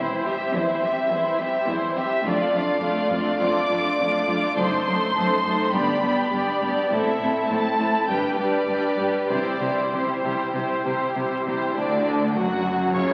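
From the first moment, a string orchestra plays a quick, dramatic and urgent classical-period movement in C major at 94-108 BPM with a rubato feel, the violins carrying a smooth, even melody with vibrato over a lush, up-front second violin line, focused violas, rich, distant cellos and double basses in the background, the whole ensemble heard through concert hall reverb and the crackle of a very old 78 rpm record before the fragment turns to a rootless Bm chord at 11.8 seconds.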